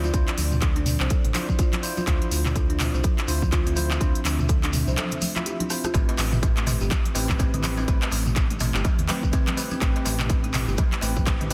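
A buzzing, woody kalimba stands out in this hypnotic, driving afro house excerpt, its ringing thumbnail-plucked arpeggios pumping against the sidechain and trailing dub echoes over a Dm9 chord that moves to Am7 at 5.9 seconds. A punchy electronic kick sits up front, joined by a house kit of crisp hats, handclaps, rim clicks and toms, while a smooth, mellow synth bass pumps underneath with a fast attack. Bright, clean tine electric piano stabs carry their own sidechain pumping and dub echo, and a very quiet ethereal pad holds sustained chords with detuned unison, chorus and tremolo. Very quiet, close and dry congas played with hard hands join the swung percussion, while a grainy shekere and, from 5.9 seconds, a small, metal-shelled darbuka sit in the background. A short break at 5.0 seconds ends with a drum fill, and the whole mix is dense and heavily limited with studio reverb.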